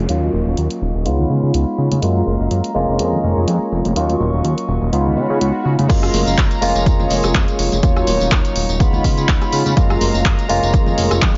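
Funky and sunny, this filtered disco house excerpt moves at 124 BPM in 4/4 with a light swing on the sixteenths, centred in F# major. A barky, clean tine electric piano heard through a combo amp carries the chords up front, cycling through D#m7, C#7, F#maj7 and A#m7/E#, treated with phaser, sidechain pumping and a low-pass filter. Behind it, a rich chamber string section with a reedy gut-string tone holds bowed, period-style chords. A fat, detuned sawtooth analog bass sits up front with the same pumping and filtering, while an overdriven analog drum machine supplies crash, handclaps, hi-hat, rim click and tambourine, joined in the background by small-room acoustic tambourine and congas. The opening rides a filter sweep, with a background downlifter at the start and a swell leading into a drop at 5.9 seconds, where a punchy, overdriven electronic kick enters up front. A digital ambience surrounds the mix, its top end capped at 7.5 kHz.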